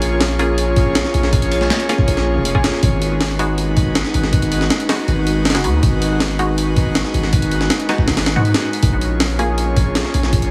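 This drum and bass piece in a jungle vein runs at 160 BPM in a straight 4/4, its mood dark and atmospheric across a short 10.5-second cut from a longer track. A sampler-style breakbeat kit sits up front, gritty and compressed, with a thumpy kick, a high-tuned snare and hi-hat playing throughout. Beside it, also up front, a long 808-style bass of deep sine tone with a fast attack and a decaying tail holds low notes from the start. An airy, breathy pad built from detuned sawtooth and triangle layers with a noise layer comes in on a slow attack, sustaining chords through a chorus effect over Bbm7, Abm7 at 2.8 seconds and back to Bbm7 at 8.8 seconds. Entering at 0.4 seconds in the background, a muted, filtered dub chord stab adds evolving, wave-folded plucks soaked in dub echo, chorus and a cassette-tape tint. The whole mix carries a heavily compressed, radio-like sound with light reverb and a small-room digital ambience.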